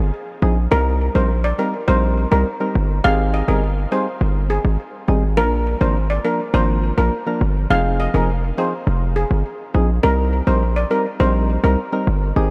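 A punchy, heavy 808-style bass opens this bouncy, hypnotic dancehall excerpt at 103 BPM, joined at 0.4 seconds by hollow, dark organ stabs with chorus that cycle through Fm7, Cm7, Abmaj7 and Bb. From 0.7 seconds a shimmering, metallic steel pan, played with hard rubber sticks, carries the melody up front with delay, ending at 11.7 seconds. Light studio reverb surrounds the parts, and the passage is cut from a longer piece.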